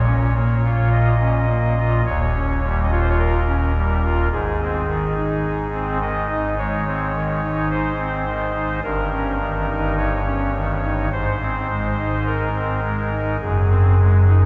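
Majestic yet serene, this slow classical chorale for solo pipe organ has a soft reed voice on an oboe stop with tremulant, romantically voiced and sitting up front. It ranges from Eb1 to Eb5 as the harmony moves from Bbm through Eb9 to Ab, then on to Eb7/G and Ab, ending on Ab7/Gb. A long, wet church reverb places the organ farther back in the room with a muted, darkened top, and the 14.5-second passage is cut from a longer work.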